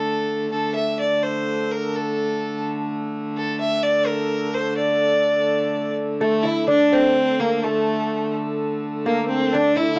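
Driving and mysterious, this excerpt from a longer medieval dance moves in a straight 6/8 at 84 beats per minute, with a clear, focused fiddle carrying the melody over a rich, smooth hurdy-gurdy drone, both played up front yet sounding distant. At 6.2 seconds a delicate, fingerpicked lute with double gut strings joins on a second line. The close, dry 1970s-style studio sound sits in a small room's short reverb, and the fiddle's light vibrato stands out.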